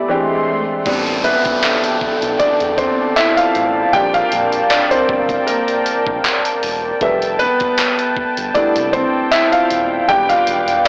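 A worn, up-front concert grand piano takes the lead from 0.9 seconds in this longing, sensual contemporary R&B excerpt at 78 BPM in A minor, moving through chords like Am11, Bb69 and Fmaj9#11 over a smooth, warbling chorused analog pad, a round, deep analog bass, a dusty, gritty sampler-style drum kit with thumpy kick, handclaps, hi-hat and crash, a very quiet woody kalimba, and an electronic swell and downlifter in the background, all within a blown-out, overdriven AM-radio sound with light reverb.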